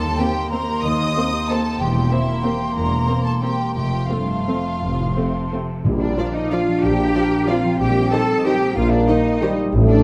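A waltz in three, stretched by rubato, this sweeping, festive orchestral ballroom excerpt carries its melody on a lush violin section with a clear second violin section beneath, while a bright silver flute with airy, lifted highs and a vintage-toned clarinet play second lines until 5.7 s. Ringing fingerpicked harp arpeggios, dark background violas and distant, roomy French horn chords fill the middle, and focused double basses and rich cellos hold the bass. At 5.8 s a present tuba joins and soft-mallet timpani add a round, very quiet touch, set in a moderate concert hall reverb.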